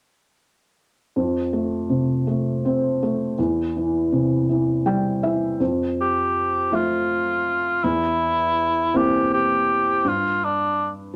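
In a straight 6/8 at 54 BPM counted in dotted quarters, this intimate, tender acoustic folk-pop ballad excerpt in F major opens at 1.2 s with a soft, thick-felt upright piano up front, tracing F, C/E and Fmaj7 chords, before a mellow cor anglais enters at 6.0 s with a classical-style solo melody and light vibrato until 10.9 s, all held in a small room's short, wet reverb.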